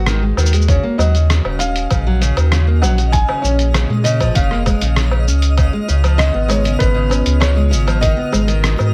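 Wrapped in light reverb, this short excerpt of wistful, autumnal folktronica moves at 98 BPM in a straight 4/4, set in Eb minor with tuning at A4 = 443 Hz. A warbling, detuned tape-like pad holds sustained chords in the background through chorus and plate reverb, while a full-bodied nylon-string guitar plays fingerpicked arpeggios softened by a low-pass filter, delay and plate reverb. A deep, round sine sub bass sits up front, and a lo-fi sampler-style kit of hi-hat, rim click, shaker and woodblock comes in at 0.1 seconds, pitched down, muffled and re-recorded in a small room. At 0.7 seconds a felt-muted upright piano takes the melody with a soft, intimate tone, audible action noise and vintage 12-bit sampler grit, joined by a thumpy, compressed electronic kick that stops at 8.2 seconds. A twinkling granular texture with octave-up shimmer drifts in behind them, as the harmony moves through Abm7, Ebm7, Bbm7 and Db7 before returning to Abm7.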